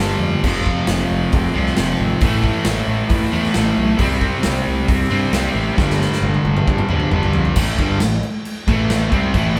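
Two distorted electric guitars open this aggressive, heavy hard rock fragment with a picked riff, joined from the start by a fuzz-laden bass. One guitar sits up front with a scooped, compressed, bright tone, while the second guitar also plays a riff a little lower in the mix. The overdriven bass, picked and punchy, grinds out the low end beneath them. A big acoustic drum kit crashes in at 0.4 seconds with sparkling cymbals, a medium-tuned snare, a forceful kick and toms, all placed up front. The riff moves through F5, A5, C5 and G5, a drum fill runs from 5.8 seconds, and at 7.6 seconds the band lands on A minor for a new section. The whole band plays live in one moderately reverberant stone room, which gives the cut-off fragment a natural, weighty ambience.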